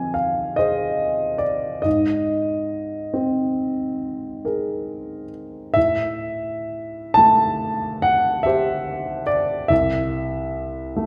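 Impressionist classical solo piano, nocturnal and wistful, this excerpt drifts in a rubato 9/8 at about 47 BPM, tuned slightly above standard at A4 = 441 Hz. A warm, natural grand piano sits up front and spans C2 to A5, moving through Fm7, Abadd9 and Am7 before settling on C at 9.7 seconds. Moderate reverb from a church or concert hall, with a 1.7-second decay, surrounds the instrument.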